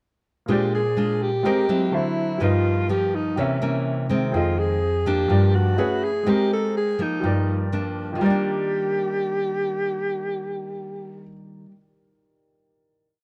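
A straight 4/4 bossa nova groove at 125 BPM in Eb major, built on the fingerpicked nylon-string guitar's thumb bass and syncopated plucked chords, carries this breezy, romantic piece, as an up-front, close-miked alto saxophone voices a motif-based jazz melody in breathy subtone with vibrato, a clear baby grand piano adds held rootless chords of short sustain, and the trio settles onto a final Ebmaj7 at 8.2 s, with the piano ringing alone until 13.2 s in a dark, warm production touched by light reverb.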